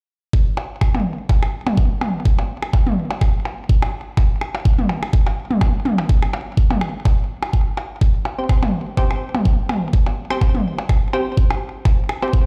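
A swung 125 BPM pulse in 4/4 drives this clinical, sparse minimal techno excerpt, centred on a C5 chord: a knocking, layered electronic kick drum sits up front with small-room character; tape-warm electronic percussion blips and toms with delay join almost at once; and a crisp, detuned, wave-folded wavetable chord stab with a bright filter pluck and delay arrives at 8.4 s, all heard through a big sound system in a bare stone room with light reverb.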